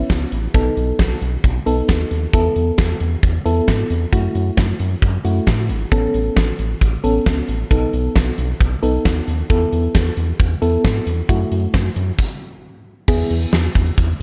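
A dark, lightly reverberant small-room production frames this nostalgic, wistful synth-pop excerpt at 134 BPM in 4/4, where a mellow, warbling FM electric piano with chorus and tremolo plays chords from Aadd9 through B7, Esus4 and F#m7 over a round, deep analog bass with ring-modulated sawtooth and sine tones, while an up-front arena drum kit with a punchy kick and fat snare drives the groove until a stop at 12.2 seconds before an E chord lands at 13.1 seconds.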